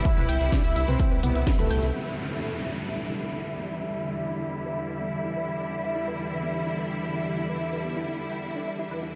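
A dreamy mix soaked in a huge ambient reverb carries faint lossy compression artefacts, giving this hypnotic, driving melodic techno excerpt a hazy glow. It opens on a drop over a C chord: a heavy, layered electronic kick and a round, deep analog bass with tube saturation sit up front, while a techno kit of hi-hat, cracking snare and toms and a grainy, close shaker sit further back, with the bass, strings, arpeggios and lead pumping under sidechain compression. A lush, clear string section holds sustained chords up front, a tight, detuned sequenced synth runs arpeggios through chorus, phaser and analog delay, and a smooth, nasal lead with vibrato sings a melody through diffuse delay, with a band accent near the end of the drop. The kick drops out at 1.6 seconds, and at 1.9 seconds the rest of the drums, the shaker, bass and lead stop as the harmony moves to Em7, a downlifter sweeps in, and a filter sweep begins on the strings. 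From 3.2 seconds a tense, bright, wave-folded drone with a slow attack and its own reverb enters beneath the strings and arpeggios, sustaining them in a floating, suspended space.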